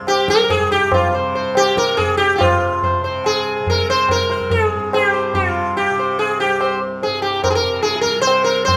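A softly plucked, buzzing tanpura drone opens this radiant, meditative Hindustani classical fragment at 143 BPM in a straight 4/4. At 0.1 s it is joined by an up-front, round sitar, plectrum-plucked and shimmering with sympathetic strings between F4 and C5, and by high-tuned, ringing tabla, before the music moves into a new section at 2.4 s within a moderate recital hall reverb.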